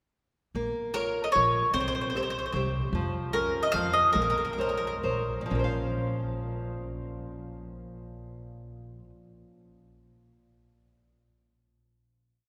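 A woody, thumpy pizzicato upright bass opens at 0.5 s with root-and-fifth notes on the main beats, soon joined by a bright, fingerpicked classical nylon-string guitar playing oompah bass notes and chord figures and a round, double-stringed mandolin carrying song-like motifs up front in this wistful, romantic Italian folk serenade in 3/4 and Bb minor, lightly swung at 124-152 BPM, which slows from 2.9 s and settles onto a final chord at 5.5 s, the recording set in the wet reverb of a church or concert hall.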